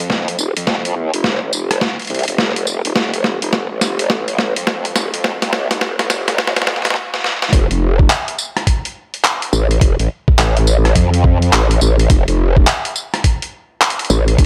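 A growling, saturated bass with a formant-filtered wobble opens this gritty, swaggering glitch hop passage at 105 BPM, alongside an up-front boom bap sampler-style kit of handclaps, hi-hat, rim click, tambourine and a high-tuned snare, with a compressed, thumpy electronic kick joining at 0.1 seconds. The opening build-up runs through a drum fill to a brief stop at 7.0 seconds before the drop lands at 7.5 seconds. The swung sixteenth-note groove sits in a dry, filtered mix, and the whole passage is cut from a longer piece.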